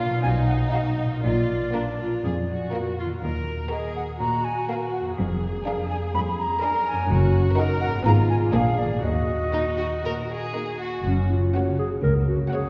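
A pure, crisp-attacked flute floats above a rich, smooth violin section melody in this playful, whimsical cinematic cue at 122 BPM in Eb minor, with a second violin line and a focused viola section filling the middle, ringing fingerpicked harp arpeggios, and a distant cello section and warm double bass section underneath; a dark, up-front clarinet takes a second line at 11.1 s after the flute stops at 10.6 s, and the magical, quirky fragment sits in a reverberant church-like hall with a soft, dulled top.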